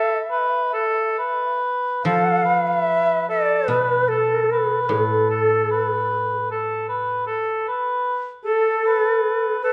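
An airy, up-front shakuhachi carries the melody with vibrato and tongued chiff over a distant, roomy oboe second line in this calm, austere excerpt of Japanese chamber music, drifting in rubato around 64-79 BPM, while a dry, woody koto played with fingerpicks accompanies low from 2.0 to 7.3 seconds, all set in a moderate recital hall reverb.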